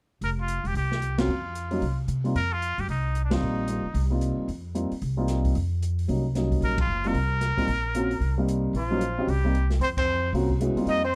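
Modal jazz with a cool, searching mood and a brisk swing, where a nasal, straight-muted trumpet carries the melody with vibrato over woody pizzicato upright bass, a dark, mellow upright piano entering at 1.2 seconds, and a small-room drum kit with dark cymbals and a boomy kick, while a distant, breathy tenor saxophone adds a second line from 8.8 seconds amid band accents in this dark production.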